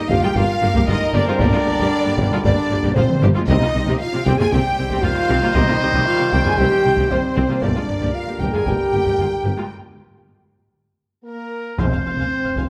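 A straight 4/4 pulse at 116 BPM is driven by a distant taiko ensemble struck with hard sticks in a large room, with drum fills at 3.0 seconds and again just before the close, in this relentless, epic cinematic orchestral cue cut from a longer piece. A lush symphonic violin section carries the focused, vibrato-rich melody, shadowed by a soft-attack studio violin section and an airy, crisp-edged flute section on a second line, while a studio viola section with a smooth top fills in the accompaniment. The brass weighs in with punchy, mellow French horns and clear, tight trombones holding sustained chords, a distant, roomy solo trumpet firing stabs, and a very quiet tuba anchoring the bass beside symphonic cellos and a faint double bass section. The harmony moves from G minor to C minor and back before landing on F minor, and a break begins at 9.7 seconds as the flutes and cellos drop out. 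At 11.8 seconds a timpani with hard mallets on calf heads sounds a brief, articulate hit, all set in a moderate scoring-stage reverb.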